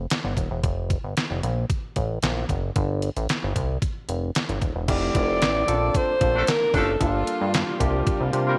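Feel-good and danceable, this short cut of early-eighties boogie funk moves at 113 BPM in a straight 4/4, centred on F major. A chorused synth bass, glossy and nasal with a filter pluck and moving notch, sits up front from the start alongside a detuned 8-bit digital drum machine whose thumpy kick, medium-tuned snare, handclaps, hi-hat and crash carry a tape-warm, sampler-style character from being re-recorded in a large room. At 4.9 seconds the harmony opens into lusher chords as a barky tine electric piano, a smooth bowed string section set in the background and a breathy alto saxophone arrive together. The sax takes the melody close-miked and intimate, with subtone, scooped notes, vibrato and a slapback echo, in a whispered jazz style. From 6.3 seconds a clear, vintage horn section adds a second line in octave doubling, all under a light reverb.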